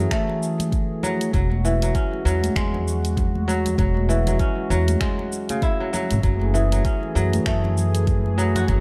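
Organic downtempo at 98 BPM with a swung sixteenth-note feel, this mystical, earthy fragment rests on a single F#m9 chord across its 8.8 seconds. Up front, a bright, ringing kora plays fingerpicked arpeggios roughened by vintage 12-bit sampler grit and delay, beside a woody pizzicato upright bass with sidechain pumping, while a mellow, detuned analog pad sustains chords with chorus and pumping of its own. A deep electronic kick and a produced kit of finger snaps, hi-hat and shaker share studio reverb, and hard-handed congas sit in the background of a dark, small-room mix.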